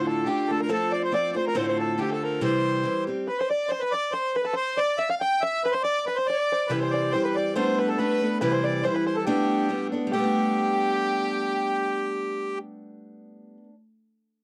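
A reedy, up-front accordion carries the melody of this lively, rollicking Celtic polka from the start, shadowed in the background by a dark, woody fiddle with light vibrato and portamento and a mellow, plunky fingerpicked open-back banjo, while a bright, boxy parlour-style steel-string guitar with audible finger squeak picks the accompaniment, drops out at 3.3 seconds and returns at 6.7 seconds, all in a dry, close 1970s-style studio sound with light reverb.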